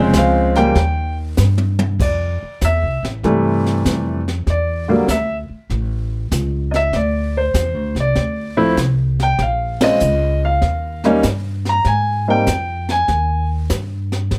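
A relaxed, swinging 97 BPM jazz piano trio groove in 4/4 with a 68% eighth-note swing sets the pace. A warm baby grand piano carries the melody up front over Bbm7 and Fmaj7 changes, while the upright bass, woody and thumpy on gut strings, plays its plucked line. The brushed kit adds dark cymbals, a high-tuned snare and a punchy kick, with a drum fill at 1.4 seconds and a band accent at 9.7 seconds, and bass and drums carry on briefly after the piano stops at 13.5 seconds in this light-reverb excerpt.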